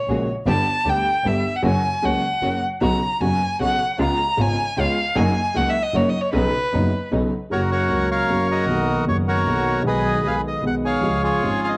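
A focused, bowed violin with vibrato leads this elegant, passionate tango excerpt in 3/4 with a rubato feel, sitting up front until 7.1 s, before a reedy bandoneon enters with the melody at 7.5 s. Beneath them, an intimate, vintage concert grand with deep bass and audible action noise plays the accompaniment, a distant, smooth bowed double bass holds the low end, and a dark, con sordino string section adds veiled stabs in the background until 7.3 s. The violin, piano, strings and bandoneon carry a cassette-tape color, and the whole home cassette recording sits in a small room with light reverb.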